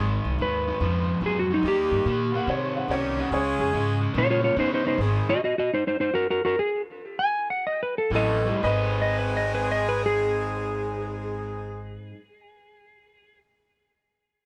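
A gritty, rollicking swung blues opens with an overdriven semi-hollow guitar picking a riff up front, alongside tight, jazz-style horn stabs doubled in octaves with light vibrato and a dark, woody pizzicato upright bass. A clean slide lap steel guitar takes the melody almost at once, sitting up front with a digital delay on its dusky tone. A warm, polished upright piano adds a second line with long sustain, dropping in briefly and then returning later. From 5.0 seconds the band slows down, and the lap steel carries on while the other parts drop out. The guitar, horns and bass come back at 8.1 seconds, just ahead of a new section at 8.6 seconds, and the lap steel rings on to 13.4 seconds. The band plays live in one room, with light reverb.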